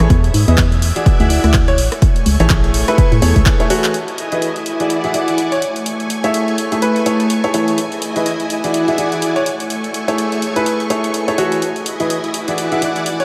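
A clear, woody upright piano riff opens this uplifting piano house fragment, carrying vintage 12-bit sampler grit and analog delay, over shimmering sawtooth string-machine violins that hold slow-attack chords thickened by ensemble chorus. Underneath, an up-front, hollow, organ-like FM bass and a dry, overdriven electronic kick push the groove, while a punchy analog drum machine adds handclaps, hi-hat and rim clicks with a swung sixteenth-note feel, and sidechain pumping makes the strings, upright piano and bass breathe with the beat. At 1.7 seconds a brilliant baby grand piano enters in the background with a long-sustaining melody through analog delay. The bass drops out at 3.4 seconds and the kick soon after, as a drum fill leads into the second section at 3.9 seconds, where the pianos, strings and drum machine continue over a cycle of Emaj7, E9 and Amaj7 chords. A cathedral-sized reverb soaks the whole mix, giving this feel-good passage a dreamy, floating glow.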